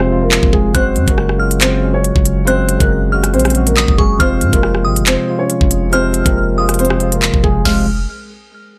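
A dry, close-sounding cut from a longer half-time drill track sets a cold, ominous mood, with an up-front electronic kit of knocking kick, sharp snare, crisp hats, rim clicks, handclaps, toms and crash cymbal over a deep, sine-toned 808-style bass whose long notes decay after a fast attack. A dark, mellow concert grand carries the melody through digital delay while a clean tine electric piano, heard as if through built-in speakers, fills out the accompaniment. At 0.7 s a glassy, crystalline FM bell enters quietly as a second line, its vintage, warbling tone shimmering through chorus, phaser and delay above chords that move from F minor to G-flat sus2 and back.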